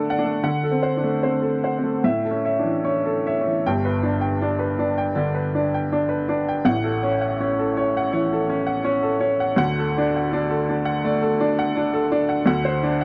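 A clear, woody, slightly detuned upright piano plays alone and up front from 0.0 to 13.0 seconds in this tender, hopeful neoclassical minimalist piece, cut from a longer work, moving with rubato at around 72-84 BPM in 4/4 in D major through a gentle progression of D7, A, G, A6, D and back to D7, its long sustain ringing across a range from G1 to G5 and softened by light reverb and a dark, warm production, with a new section opening at 3.7 seconds.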